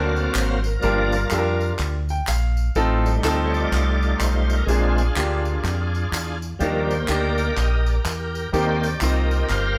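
Soulful and jubilant, this short uptempo gospel cut in Eb major swings at 124 BPM as a shouting, lightly overdriven tonewheel organ solos over its own sustained chords through a fast rotary speaker with chorus vibrato, while a brilliant grand piano accompanies and drops in a fill at 1.8 seconds, a round, punchy fingered electric bass sits dark and up front, and tambourine with group handclaps adds acoustic percussion, all heard as a band playing live in a moderate stone room.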